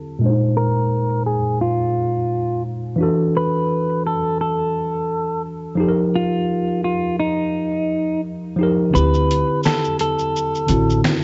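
Swung sixteenths at 86 BPM in 4/4 give this short lo-fi hip hop cut a nostalgic and mellow lean. A worn, slightly out-of-tune tine electric piano sits up front behind a low-pass filter, voicing suspended ninth chords that move from Bb9sus4 through E9sus4 and F9sus4 to D9sus4, while a filter sweep runs through the opening section. A clean, fingered electric guitar, compressed and also low-pass filtered, carries the melody from just after the start. At 8.9 seconds a woody, thumpy pizzicato upright bass with gut strings enters, and at 9.0 seconds a gritty sampler-style drum kit joins with finger snaps, hi-hat, shaker and a fat snare. Light reverb and a warbling old-cassette character with pitch drift, its highs capped at 7.8 kHz, lend the recording a faded, lived-in tone.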